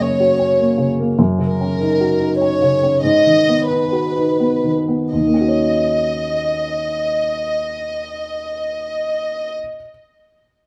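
A felt-muted upright piano and a dark chamber violin section open together in this fragile, longing neoclassical fragment in 3/4, the piano offering soft, mellow, intimate accompaniment up front while the bowed violins carry the melody with vibrato, a soft attack, sul tasto bowing and a smooth top. The rubato pacing slows from 0.3 to 5.1 seconds, where a second passage begins on a minor-seventh chord. Light reverb surrounds the close, natural sound until the violins fall away at 9.5 seconds and the piano closes alone at 9.9 seconds.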